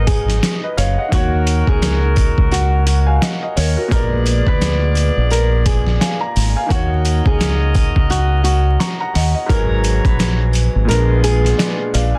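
A deep, round fingered electric bass sits up front alongside a gritty, pitched-down sampler-style drum kit with a thumpy kick, driving this dark, reflective boom-bap hip-hop cut in Eb minor at 86 BPM with a swung 16th feel. A fingerpicked flamenco guitar with old strings carries the melody with a boxy tone, delay and plate reverb, while a woody upright piano with audible action noise accompanies and a mellow, distant horn section adds tight stabs over chords moving from Abm7 through Ebm7 to Bb7b9. Sleigh bells jingle in the background, vinyl crackle colours the dense, heavily limited master, and the kick drops out at 10.9 seconds near the end of this 12-second cut from a longer piece.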